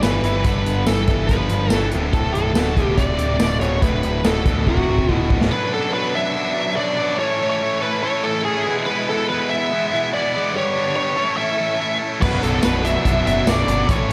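A bluesy, overdriven lead guitar with slapback echo sits up front through this brooding, driving classic rock excerpt in B minor at 143 BPM, riding over a bright, overdriven rhythm guitar riff that also carries slapback echo. A very quiet tight distorted guitar, a growling picked bass and a vintage drum kit with a punchy kick, snare, hi-hat, crash and tambourine push the opening until a drum fill at 4.7 s. At 5.5 s those three drop away as a tonewheel organ enters in the background with slow rotary swirl and chorus vibrato; they return at 12.2 s alongside a faint double-tracked distorted guitar, all within a big arena sound and recital-hall reverb.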